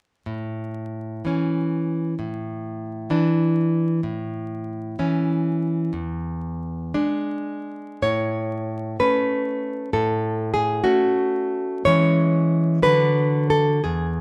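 A full-bodied, deep fingerpicked nylon-string guitar sits up front in this nostalgic, romantic solo classical piece in A major and 6/8. It moves with rubato at 52-67 BPM (dotted quarters), circling from A through Asus4 and E7 before a new section at 8.1 s turns toward C#m/E and D. The performance, cut from a longer piece, is recorded live in one room with moderate large-studio reverb and vinyl crackle.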